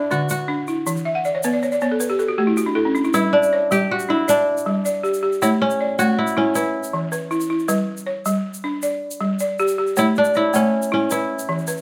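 A ringing, crisp fingerpicked kora melody and buzzing, woody balafon arpeggios struck with hard rubber mallets open this joyful West African string and xylophone piece together, with a grainy tube shaker joining at 0.1 s. Moving at 106 BPM in a straight 12/8 in G lydian, the balafon adds a fill from 1.1 to 3.1 s before the music settles into its second section, its vintage, band-limited tone sitting up front beside the kora. Close, detailed microphones in a moderate recital hall reverb give this short cut from a longer piece an intimate, airy presence.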